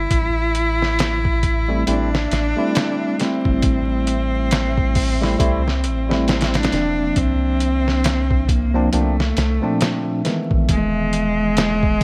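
Dark and smoky, this trip hop excerpt moves at a slow 68 BPM with a swung 16th-note feel in A phrygian, built on a gritty, pitched-down sampler-style drum kit with a thumpy kick and a deep, round dub sub bass, all under a layer of vinyl crackle. An up-front bowed cello carries the melody with vibrato and tape echo, and at 1.7 s a bright, clean tine electric piano joins with harmonic tremolo and its own echo. A very quiet, breathy, wind-like tuned noise layer drifts in at 1.1 s as the chords pass from Am7 through C9sus4 to Emaj7.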